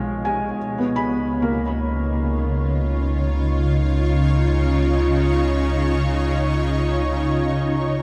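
Serene and luminous, this short ambient excerpt drifts in free time, cut from a longer piece and bathed in a huge, wet reverb with a dark production. A shimmering pad carries sustained chords throughout its 8 seconds, fading in from the start, its detuned, ethereal tone given an octave-up sparkle, granular texture and chorus. Up front beside it, a felt-muted upright piano plays soft, mellow arpeggios with an intimate, thin-felt character and a trail of tape echo. Beneath them, a round sine sub bass holds deep, sustained low notes. The harmony rests on B before moving to C#9 at 0.6 seconds, so the sound stays suspended and glowing.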